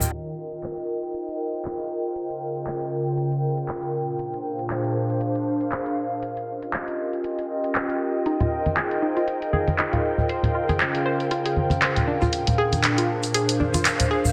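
A dense, heavily limited mix bathed in echo-chamber reverb and a low-pass filter frames this smooth, warm deep house excerpt, where a breathy, airy pad under a filter sweep lays down texture and a warbling, nostalgic tape-like pad carries the chords over a punchy, up-front analog drum machine with crash, handclaps and hi-hat, until close acoustic congas, a grainy egg shaker in the background and a bright, round analog pluck playing arpeggios through chorus and analog delay join at about 8.3 seconds.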